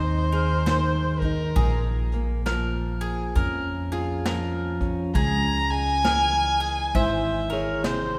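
Hopeful and gentle, this short cut from a longer acoustic folk piece moves at an unhurried 67 BPM in 4/4 with a swung eighth-note feel, drifting from Ab to Bb minor and then Db minor. A nasal, lightly vibrato-touched fiddle carries the melody as a solo across a range of Bb4 to Bb5. Beneath it sit a fingerpicked plugged-in steel-string guitar, a bright bowl-back mandolin picking arpeggios on its double strings, and a woody pizzicato upright bass, while a vintage brush kit with a punchy kick and rolled-off top enters at 0.3 seconds, all set in a lush concert hall reverb.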